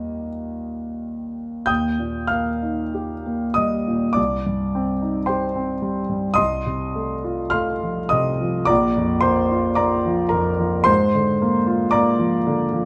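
Serene and dreamy, this romantic classical nocturne for solo piano drifts in 4/4 with a free, rubato feel, its harmony moving from Eb through Cm and F7/C toward Bb and a closing Bb7/Ab. The concert grand sits up front with an intimate, natural tone, deep bass reaching down to Bb1, and audible action noise from the instrument itself. Light reverb and a dark, warm production frame this short excerpt cut from a longer piece, which runs for 12.9 seconds.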